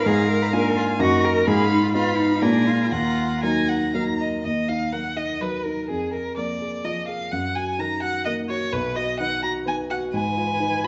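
Quick classical-period movement for piano quartet in E-flat minor at 127 BPM in 3/4, lively and spirited with a rubato feel, in which a rich, focused violin with vibrato carries the melody across this 10.9-second fragment while a second, smooth-topped violin and an expressive, distant cello with portamento weave secondary lines and a warm grand piano with short sustain sits up front in accompaniment, moving through harmonies built on Bb7, Ebm and Fm7b5 inside the wet reverb of a recital hall.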